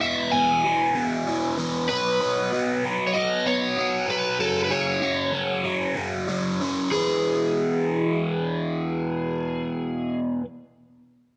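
Sunny and swaggering, this straight-feel rock clip, cut from a longer piece, sets a biting, bright, double-tracked overdriven electric guitar riff up front with phaser, while a warm overdriven slide guitar played with fingerpicks carries the melody over chords moving from E through B5 and F#5 and back to E, all in a moderate echo-chamber reverb.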